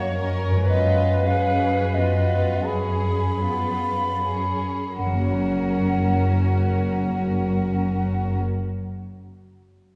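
Classical and tender, this serene slow romantic movement in F# major sways in a rubato 6/8 at 24-40 BPM, slowing through its opening 5.0 seconds. A soft, sul tasto violin section carries the melody in the background, while an airy flute and a focused second violin section weave second lines. The viola section offers a smooth, even accompaniment alongside the harp's ringing, thumb-plucked arpeggios, and an expressive cello section sings the bass with portamento. A double bass section joins at 5.0 seconds, all heard from further back in a wet concert hall.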